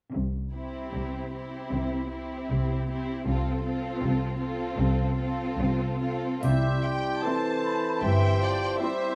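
A bowed violin section carries the melody with smooth vibrato in this serene, rubato fragment of a slow romantic orchestral movement in C major, moving at roughly 68-81 BPM in 4/4. Cellos and double basses set a rich foundation from 0.1 seconds, with a second violin line and an expressive viola accompaniment joining at 0.5 seconds. At 6.4 seconds an airy, very quiet flute ensemble, a vintage-toned oboe, a mellow clarinet and bassoon, tight French horn chords and a dry triangle in the background fill out the texture, all set in a wet recital-hall reverb.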